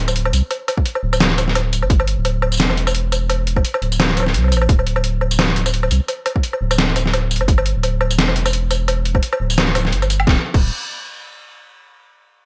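A half-time groove at 172 BPM with a light 16th-note swing drives this tense, cinematic drum and bass drop, cut from a longer piece: a deep, thick, saturated sub bass with a fast attack and sustained tone sits up front, while a gritty, pitched-down, tape-warm sampler-style kit of crash, hi-hat, medium-tuned snare, tambourine and woodblock is bathed in gated reverb, and a hard-clipped electronic kick enters at 0.8 s, the mix framed by light digital ambience and a bright 1980s-style production sheen.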